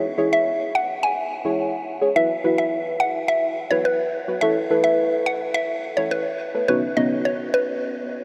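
Pop with a summery, upbeat mood, this short dreamy clip is soaked in a huge ambient reverb and moves through C#m, Esus2, A and Badd9. A woody, round, mallet-like synth pluck carries the melody up front, its percussive FM tone layered with noise and coloured with chorus, phaser and a diffuse ambient delay. Beneath it, a deep, nasal chord stab with a sub octave and a filter sweep supplies dark, chorused accompaniment until 7.5 seconds, while the pluck rings on to 8.2 seconds.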